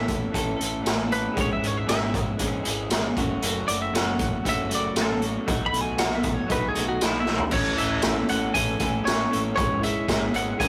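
A rough rehearsal-room recording with warm saturation frames this carefree, wistful indie rock excerpt at 117 BPM: a bright, twangy twelve-string electric guitar with tape echo carries a clean solo melody through the first 7.5 seconds over two crunchy overdriven guitar riffs in the background (one with spring reverb), a fuzzy, overdriven picked bass and an up-front raw garage drum kit with a boomy kick, gritty saturation and a rolled-off top, whose fill at 7.3 seconds leads into a new section where a worn, slightly out-of-tune tine electric piano adds a very quiet, mellow second line from 7.5 seconds.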